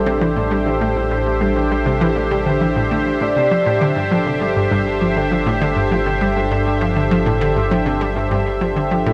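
Cosmic and mysterious, this ambient, sequencer-driven space music moves at 100 BPM in a straight 4/4, heard as a 9.1-second cut from a longer piece. A sweeping, resonant pad sits up front, holding sustained chords with a detuned, ring-modulated shimmer and a slow filter swell, thickened by chorus. Beneath it, an analog pluck repeats a riff in the low register, its round, snappy attack and short decay carried by chorus and tape echo. A concert harp rings in the background with thumb-plucked arpeggios, softened by a low-pass filter and trailed by tape echo, while a fat analog bass anchors the low end with a thick, mellow tone. The harmony moves from Am7 to Gsus2 at 3.5 seconds, and the whole mix is soaked in a lush hall reverb that gives it a dreamy, floating depth.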